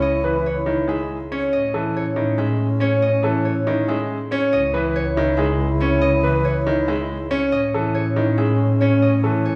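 A wet recital-hall reverb fills this church or concert-hall recording, giving the roughly 9.6-second fragment of a longer classical piece a resonant, spacious glow. It is minimalist pattern music in C# minor and 7/8, pulsing at 280 eighths per minute with a straight feel that sounds hypnotic and urgent. A fingerpicked concert harp carries the ringing melody high above, while a wooden-headed alto flute with a pure tone, soft attack and gentle vibrato adds a second line beneath it. A clear concert grand piano, up front with a deep bass, supplies the accompaniment, and a second, warm grand piano spins arpeggios in the middle register. Anchoring it all is a lush, bowed double bass section, rich and focused with a smooth top and vibrato, sitting prominently at the front of the mix. The harmony sways between C#m7 and Amaj7, with changes at 1.5, 4.5 and 7.5 seconds.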